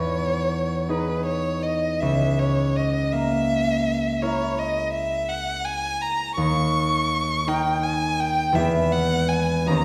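This is a classical romantic duo for violin and harp, yearning and solemn in mood. It moves at a slow 55 BPM, counted in dotted quarters in 12/8, with a rubato feel. Across this 9.8-second fragment of a longer piece, a single bowed violin carries the melody between B4 and C#6, its tone warm and expressive, with vibrato, soft attacks and portamento slides, placed close and up front. Beneath it, the concert harp plays a fingerpicked accompaniment from C#2 to A#4, acoustic and ringing, also up front. The harmony passes from Emaj7 through A#dim/C# and D#5 before arriving on E at 8.6 seconds, all set in a wet recital hall reverb heard from further back in the room.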